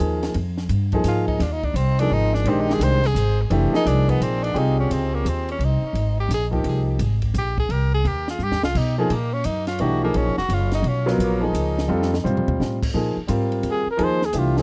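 A brisk 172 BPM waltz in 3/4 with a loose swing drives this hypnotic, searching modal jazz passage, cut from a longer piece, that moves from Bb mixolydian into Ab major. A woody, thumpy pizzicato upright bass sits up front beside a concert grand piano with a deep, natural low end, while a compact cocktail kit, lower in the mix, adds dark cymbals, a high-tuned snare and a punchy kick, with a couple of fills. At 1.1 seconds a bright, forceful tenor saxophone takes the solo, its vibrato-laden jazz phrasing carried by a tape echo until it stops at 11.9 seconds. A close-miked, warm trumpet with vibrato steps forward at 13.7 seconds to begin its own solo just as the passage ends. Harmonies drift through suspended, major ninth and major seventh colours, and the whole sound is dry and intimate, like a close 1970s studio session.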